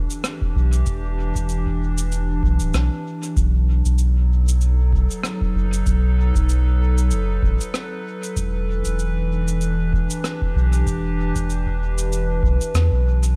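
A warbly, detuned pad with chorus and its own reverb opens this hazy, meditative stretch of ambient dub, holding sustained chords over a round, soft sub bass that sits up front, the harmony moving from Em7 to B7 at 3.4 seconds and back to Em7 at 8.4 seconds. A dark, smooth cabasa and rim click trail dub echo across a lightly swung groove, while a dry, deep electronic kick sits in the background from 0.4 seconds. The lo-fi, nostalgic pad and the small room's light reverb give this fragment of a longer piece a mellow, drifting calm.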